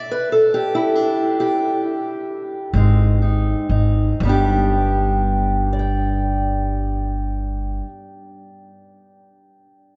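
The recording sits in a vast, echoing cathedral space, where a long, wet reverb of 5.8 seconds trails every note and the top end is dark and muffled. This brief cut from a longer acoustic country blues piece moves in a slow 12/8 at 39-48 BPM with a straight feel, tuned slightly low to A4 = 438 Hz, and carries a swaggering, gritty mood. An up-front, boxy parlour steel-string guitar, fingerpicked, carries the melody across its full span, ranging from G2 up to G5. It opens alone in a stop over a G5 chord and slows down through the opening section. A woody, pizzicato upright bass with steel strings enters up front at 2.7 seconds as the harmony shifts to Ab, then the music settles back to G as a second section begins at 4.2 seconds, and the bass drops out at 7.8 seconds.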